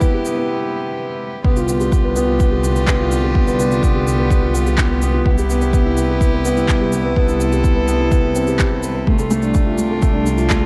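A light reverb gives this hopeful, luminous piano-and-strings electronica a sense of air. It moves at 126 BPM in a straight 4/4 in C major, tuned to A4 = 439 Hz, and is cut from a longer piece. Up front, a felt-muted upright piano plays a soft, mellow, intimate riff with a thick-felt darkness, its notes trailed by a digital delay. Behind it, a bowed string quartet holds sustained chords with a reedy, nasal, gut-string tone in period style. A deep, layered electronic kick and electronic shaker and handclaps, both overdriven and re-recorded in a large room, drive the groove, with a brief break from 0.5 seconds during the opening build-up. At the drop at 1.4 seconds, a bowed chamber double bass section enters on a low C, earthy and clear with light vibrato and a smooth top, thickened by tube saturation and sidechain pumping. Across the excerpt the harmony moves from Cmaj7 through G7/C, back to Cmaj7, and on to F6/C.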